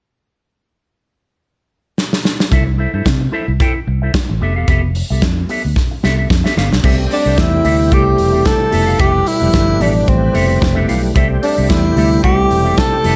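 Celebratory and joyful, this disco excerpt lifts off with a drum fill at 2.0 seconds from a punchy, up-front studio kit with bright cymbals and gated reverb, joined by a warm, punchy fingered bass and a dark, scooped envelope-filtered guitar over a swung sixteenth-note groove that moves between C6 and Fmaj9#11. At 6.8 seconds a gritty overdriven tonewheel organ with chorus vibrato and slow rotary speaker adds thick sustained chords in the background. Moments later a breathy, intimate tenor saxophone with subtone and slapback echo takes the melody up front, backed by a mellow tine electric piano in a small room ambience.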